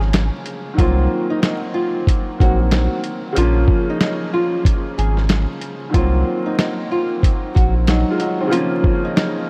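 A worn, slightly detuned upright piano with cassette-tape coloring, a thick saturated sub bass and a muffled, pitched-down sampler-style drum kit with a thumpy kick open this moody, dark boom-bap hip-hop excerpt at 93 BPM with a swung sixteenth feel, a small fingerpicked nylon-string guitar with analog chorus and delay joins at 0.8 seconds, and the Bbm to Cm7b5 changes sit in a small room under vinyl crackle, the bass dropping out at 8.0 seconds.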